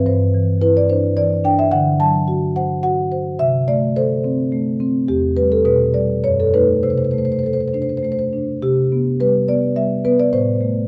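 Close, detailed microphones catch a mellow, round marimba played with soft mallets up front in a moderate recital hall reverb, as this flowing, warm excerpt of a contemporary classical piece for solo marimba moves in a rubato 3/4 at 106 BPM in C lydian, spanning E2 to A5 through chords from Cadd9/G and D7 to F#m6 and Csus2 before settling on Am at 10.3 seconds.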